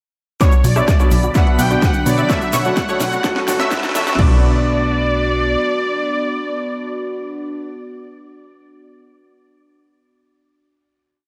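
A punchy, overdriven electronic kick sits up front in this dreamy, emotional progressive house piece at 127 BPM in B minor, marking four-on-the-floor time in a small room. It is joined by an overdriven house kit with a cracking snare, bright hats, rim clicks and crash cymbal. From 0.4 s a build runs to 4.2 s, with a drum fill and filter sweeps over the analog pluck and the grand piano. Underneath, a very quiet, gritty sampler-style breakbeat, a grainy egg shaker in hand-played sixteenths and a faint twinkling granular shimmer on a held high B5 fill in the texture. A smooth, detuned supersaw carries a motif-based melody through diffuse ambient delay, the round pluck repeats a chorused sixteenth-note riff over a pedal note, and the brilliant piano plays dotted-rhythm stabs through delay and a low-pass filter. A funky, off-beat analog bass with a fast attack, filter pluck and moving notch drives beneath, and it pumps against the sidechain along with the supersaw, pluck, piano and an evolving, phased wavetable pad of sustained chords. 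Meanwhile the chords move from Bmadd9 to F#m/B before the drums fall away and the piece settles on a final B minor chord in a mix soaked in church reverb.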